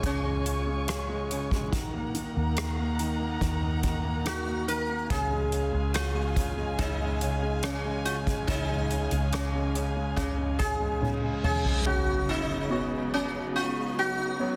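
A melancholic, emotional pop ballad at 71 BPM in 4/4, where a bright, buzzing sitar carries the melody up front, shimmering with sympathetic strings over a clear concert grand piano with long sustain and a lush, bowed symphonic string section holding chords that move from Db to Ebm and back. A dark, round, foam-muted electric bass and a soft-mallet drum kit with a boomy kick and a soft-clipped snare play until 11.8 seconds, with an electronic reverse cymbal building from 10.9 seconds and a drum fill from 11.0 seconds. An impact lands at 11.9 seconds as the harmony shifts to Db7sus4, all set in light small-room reverb under a dense, heavily limited modern master.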